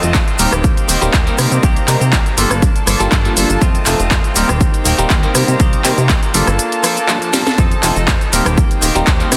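An up-front, punchy, overdriven electronic kick anchors this nostalgic, sensual filtered disco house excerpt at 121 BPM, alongside an overdriven house kit with cracking snare, handclaps, hi-hat, rim click and shaker, a very quiet close tube shaker, a plucky, funky analog bass, a stringy phased clav, a bright, twangy clean electric guitar riff with spring reverb, and a reedy string section holding chords in the background, all but the tube shaker and kick pumping to the sidechain, over a loop of Eb6, Cm7, Gm9 and F7 with a drum fill at 7.3 seconds.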